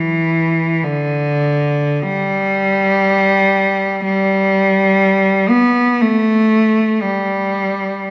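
A generous recital-hall reverb surrounds a single cello, which sits up front in the sound. This brief, yearning and mournful classical passage for unaccompanied cello unfolds in free time across 8.1 seconds, tuned to A4 = 438 Hz and cut from a longer piece. The bowed line stays between D3 and B3, its clear, smooth and even tone carried by vibrato.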